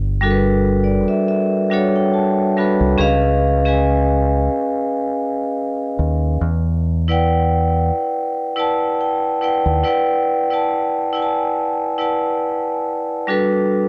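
Lo-fi hip hop at 70 BPM in E dorian with a gentle 16th-note swing, reflective and hazy, where a round, up-front dub electric bass anchors Gmaj7, C#7 and Em7 changes beneath a ringing, hard-mallet vibraphone with its motor off, colored by vintage, band-limited cassette tape and a low-pass filter and adding fills, until the bass drops out at 9.8 seconds and the vibraphone carries on alone toward a return to Gmaj7, set within a dark production with light studio reverb.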